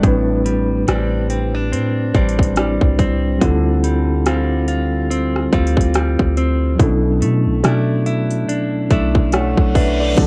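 A mellow tine electric piano and clean, compressed, direct-recorded electric guitar arpeggios play from the very start of this sensual, late-night contemporary R&B excerpt at 71 BPM with a swung 16th feel. Beneath them, also from the outset, sit a deep, boomy 808-style bass and an overdriven, up-front trap kit with hard-clipped kick, metallic hats, rim clicks and crash. The keys, guitar and drums all carry cassette-tape colouring, and the guitar also has tape echo, in a lightly reverberant home-recording sound. The chords move from Am11 through Dm11 to Bm11 before a reverse cymbal and downlifter enter at 9.5 seconds.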